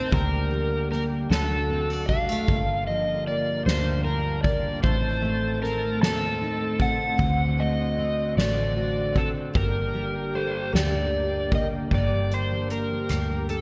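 A dark, overdriven slide guitar sings the melody up front from the first moment, colored by analog chorus and digital delay, over a double-tracked, fingerpicked steel-string acoustic guitar with a full-bodied tone and audible finger squeak. This melancholic, aching pop ballad moves slowly in 6/8 at 51 BPM in G minor, its chords passing from Gm/D through Adim and D7 before settling back on Gm. A smooth tonewheel organ holds sustained chords with chorus vibrato beneath, while a round, foam-muted electric bass anchors the low end. A soft-mallet drum kit enters at 0.1 seconds, its fat snare and boomy kick wrapped in gated reverb. At 10.3 seconds a tight French horn section adds a brief, shadowy second line in the background, and the whole passage sits in a lush hall with the bright sheen of 1980s-style digital production, cut from a longer piece.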